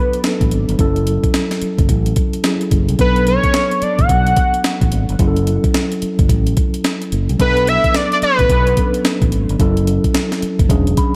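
Slick and bouncy, this short cut from a longer new jack swing R&B piece moves at 109 BPM in 4/4 with a swung sixteenth-note feel, sitting in B dorian as the chords alternate between Bm7 and F#m7. A fat analog lead carries the melody from the start until 9.3 seconds, its detuned sawtooth tone thickened by a sub octave, fast in attack and sustained, with vibrato, chorus and tape echo keeping it evolving and up front. Beneath it, a mellow tine electric piano plays clean accompaniment through its built-in speakers for the full length, closing with a brief fill at 10.7 seconds. The breakbeat sampler-style drum kit is gritty, compressed and pitched up, with a thumpy kick, a medium-tuned snare and hi-hat pushed forward and touched with gated reverb. A fingered electric bass, direct and amped with tube saturation, adds a warm low end, while the overall room stays dry.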